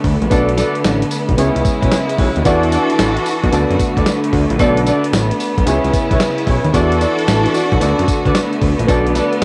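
New jack swing R&B at 112 BPM in B dorian, slick and confident, with a gritty, compressed sampler-style drum kit of thumpy kick, snare, hi-hat and tambourine riding a 16th-note swing; a fat, detuned sawtooth analog bass with a filter sweep; a lush bowed string section holding sustained chords; a short-sustain baby grand piano accompaniment; and mellow horn stabs with octave doubling and analog delay from 0.3 s, all captured as a home cassette recording with light reverb in this short cut from a longer piece.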